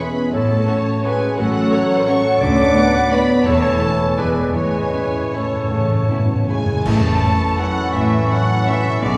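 Festive and elegant, this rubato orchestral ballroom waltz excerpt sets a lush, distant violin melody above a rich second violin line, a pure, hollow silver flute, a clear oboe and a dark clarinet, with smooth violas, a bassoon, light-vibrato French horn chords and ringing thumb-plucked harp arpeggios, while focused cellos and portamento double basses carry the bass; very quiet timpani, bright clash cymbals, a cymbal swell and concert bass drum enter at 4.6 seconds ahead of an ensemble accent at 6.9 seconds, the whole set in a reverberant concert hall heard from further back.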